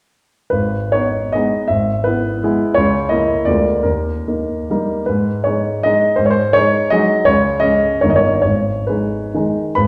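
A warm, up-front grand piano with short sustain plays alone from 0.5 s in this wistful, nostalgic romantic classical dance in 3/4 and G# minor, its dotted rhythms moving between 129 and 179 BPM with free rubato, ringing through a wet recital-hall reverb in a brief fragment cut from a longer piece.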